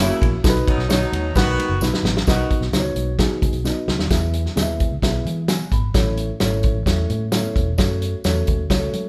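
Warm and danceable, this short excerpt from a longer uptempo 1960s-style soul piece moves at 131 BPM in a straight 4/4 in E major, with the full band playing live together in one room under light reverb. A distant, roomy horn section in a jazz style opens the cut with a brief second line that ends by 2.6 seconds, while a dark, woody upright piano with long sustain carries the accompaniment throughout. Underneath, a vintage foam-muted fingered electric bass sounds round and punchy. The acoustic drum kit sits up front, with a punchy kick, a medium-tuned snare, hi-hat and ride cymbal, and it plays fills at 1.8 and 3.6 seconds that lead into new sections. A jingly tambourine in the background and very quiet, high-tuned congas with a thin, damped skin add a light layer of percussion. The harmony moves from B to E at 4.1 seconds, then through A and F#m.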